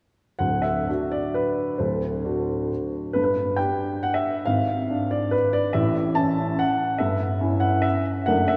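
A wet church reverb with a 3.0-second decay surrounds this dark, warm-toned recording, giving the music a spacious, resonant sound. A solo baby grand piano sits up front with an open tone and long sustain, playing from 0.4 to 8.6 seconds across a range from D1 to A5. The piece is a romantic classical dance in triple time, set in 3/4 with dotted rhythms and a flexible rubato feel. The tempo floats between 122 and 156 BPM. The harmony in D major moves from D to G5, then through G#dim7 and A before settling on Em69/G. Cut from a longer piece, this passage feels graceful with a rustic charm.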